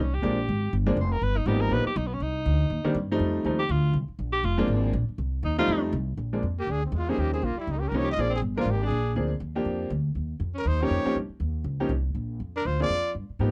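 A vintage-toned tenor saxophone solo opens this playful, fast-swinging small-group jazz piece at 241 BPM in Bb mixolydian, over a woody pizzicato upright bass and a clear, short-sustained baby grand piano that joins at 0.2 seconds, before a warm, lightly vibratoed trumpet takes the melody up front at 6.6 seconds, all captured in a dry, close 1970s-style studio sound.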